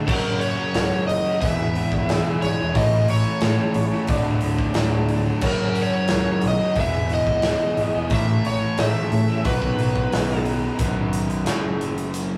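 Classic rock with a driving, confident mood, cut from a longer piece, where an up-front, big-room drum kit with a punchy kick and bright cymbals drives a dark, compressed overdriven electric guitar riff, a crunchy overdriven guitar riff in the background and a growling, overdriven picked electric bass. Out front, an overdriven slide guitar played with fingerpicks carries the melody until 10.4 seconds over chords moving through F#, E, A and D. A very quiet, boxy, swing-style picked acoustic guitar drops out at 10.8 seconds, and a very quiet, woody, vintage upright piano adds accompaniment, all captured as a rough rehearsal-room recording with light reverb.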